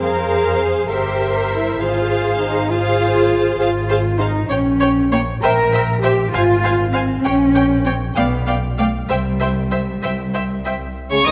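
In a straight 6/8 lilt at 66 beats per minute, this stormy, dramatic classical-period string orchestra movement, cut from a longer piece, moves through F minor and C7 harmonies toward a closing C chord near 9.1 seconds. A muted symphonic violin section carries the melody with light vibrato, over a distant muted chamber second-violin line and a close, soft-attacked viola accompaniment. Beneath them, a smooth-topped muted cello section, the most prominent part, joins a muted double bass section in the bass, with all five sections sounding dark and veiled in a moderate concert hall reverb.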